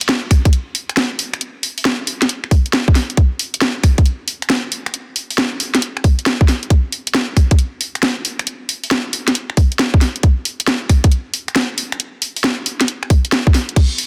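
A swung 4/4 groove at 136 BPM drives this moody, late-night UK garage excerpt, where an overdriven garage drum kit of crash cymbal, finger snaps, hi-hat and a cracking snare sits up front from 0.0 s beside a tight, layered electronic kick drum entering at 0.3 s, all wrapped in light reverb and a dense, heavily limited modern master.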